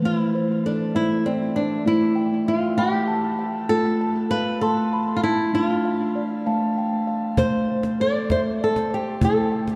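A round, ringing steel tongue drum played with soft rubber mallets opens this hypnotic, gentle world meditation in 6/8 with airy arpeggios, joined at 0.1 s by a fingerpicked flamenco guitar melody with audible finger squeak, both up front and bathed in shimmer reverb and tape echo within a dark concert-hall ambience, and a snappy, close cajon struck with hard hands enters at 7.4 s.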